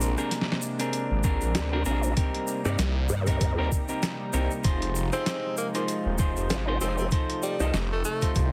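Glitch hop at 97 BPM in F dorian, funky and gritty, with a 16th-note swing, moving through Bb9, Cm7, Fm7 and F7 in this short cut from a longer piece. A smooth, warbling analog pad with chorus and sidechain pumping sits in the background under clean hollow-body guitar stabs with spring reverb and digital delay, while a swirling phased saw bass and a grainy egg shaker run throughout. Pitched-down, tape-warm boom bap drums of hi-hat, rim click and snare enter at 0.2 seconds, a thumpy electronic kick joins at 1.2 seconds, a nasal vowel-sweep wobble bass pushes up front from 1.6 seconds, and a clear tenor saxophone with light vibrato and scooped notes takes a jazz solo from 5.1 seconds, all under a heavily compressed, radio-like sound.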